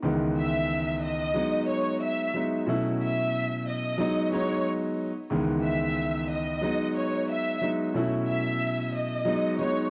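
A dark, mellow concert grand piano provides the accompaniment in this moody hip hop excerpt, sitting up front with deep bass and audible action noise that give it an intimate, vintage character. It opens at 0.0 s, and a lush, bowed violin section joins at 0.4 s to carry the melody high above, its expressive vibrato trailed by a delay. The groove has a gentle swing, and the harmony circles through minor seventh chords and a suspended seventh, returning again and again to G#m7. A moderate plate reverb adds a 2.8-second tail to the sound, while worn cassette tape, warbly pitch drift and vinyl crackle lend a faded, nostalgic grit. The passage runs to 9.9 s as part of a longer piece.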